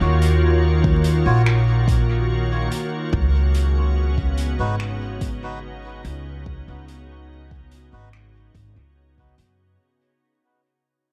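A woody, up-front pizzicato upright bass anchors this meditative, spacious ambient dub fragment, which fades throughout and moves from an Ebm9 chord to Db9sus4 at 3.1 seconds. Beneath it sits a deep electronic kick with a large-room character, while a distant, roomy soft-mallet kit adds finger snaps and hi-hat through dub echo. A pure, detuned organ-like pad with chorus and its own reverb holds slow-blooming chords, and from 1.3 to 8.1 seconds a reedy, breathy melodica drops gritty 12-bit stabs into the echo-heavy mix, all over a bed of vinyl crackle.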